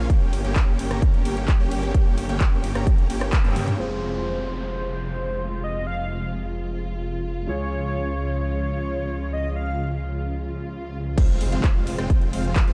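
A dark, warm digital ambience wraps this euphoric, powerful slice of festival progressive house, cut from a longer piece. It opens on a drop, where a punchy, up-front electronic kick anchors a layered big-room kit with metallic hats, crash, ride, handclaps, rim clicks and toms. Huge, bright supersaw chords carry the riff with tape echo, above a thick, saturated detuned saw bass with chorus and a bowed string section holding soft, sul tasto chords, all three pumping to the sidechain. After a band accent at 3.3 seconds and a drum fill, the drop falls away at 3.8 seconds into a new section where an airy, dreamy lead with vibrato and a moving notch sings high over a mellow, vintage baby grand piano roughened by 12-bit sampler grit, while a downlifter sweeps through. A swell builds from 10.5 seconds and an impact lands at 11.2 seconds as the kick, kit and supersaws return for the closing drop.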